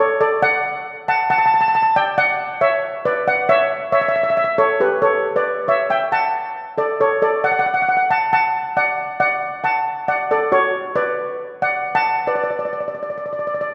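Carefree and bouncy, this calypso fragment is cut from a longer piece and moves at 137 BPM in 4/4 with a light swing on the sixteenths, settled in D major with tuning a touch above standard pitch. A lone steel pan carries the whole passage from the start to 13.7 seconds, playing lead with medium rubber sticks and ranging from F#4 up to A5. Its tone is metallic and shimmering with an airy quality, sitting up front even as the recording places the listener further back in a concert hall with a long, wet reverb. The harmony moves from D through a rootless Bm add9 to A, then D over A and Bm, before the chords drop away at 12.5 seconds.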